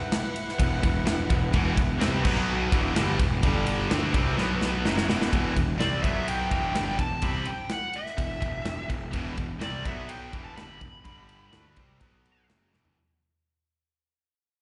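Heavy metal in a heavy, epic mood, cut from a longer piece, opening with a dark chamber string section holding soft, bowed sustained chords in the background until 5.3 seconds as a tight, up-front studio drum kit and two bright high-gain guitar riffs with slapback echo come crashing in over a growly, fuzz-overdriven bass. At 5.8 seconds an up-front high-gain lead guitar takes the melody high above, its distortion trailed by slapback echo and digital delay, while the band moves through minor and power-chord changes and a drum fill closes each half. The sound is that of a live gig heard through a venue's PA with recital hall reverb and a dull, top-shaved edge, and the whole passage fades out from 5.3 seconds on.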